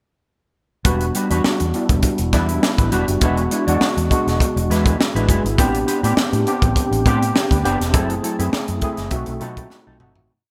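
A crisp, swung sixteenth-note groove in 4/4 drives this slick, urban piece of polished 1980s jazz-funk pop, built on a punchy kick and high-tuned snare from a saturated fusion kit with gated reverb, and a dark, round, foam-muted fingered bass playing an agile syncopated line dotted with ghost notes. Up front, a barky, overdriven tine electric piano through a combo amp and ensemble chorus plays syncopated rootless chords with grace notes and short fills, while a mellow, clean, fingered electric guitar with analog chorus adds a sixteenth-note rhythm riff as the verse moves from Em9 to B7b9. The bright digital production has a light small-room ambience, and a fade-out begins at 7.9 seconds, with an electric piano fill at 9.1 seconds and a drum fill at 9.7 seconds.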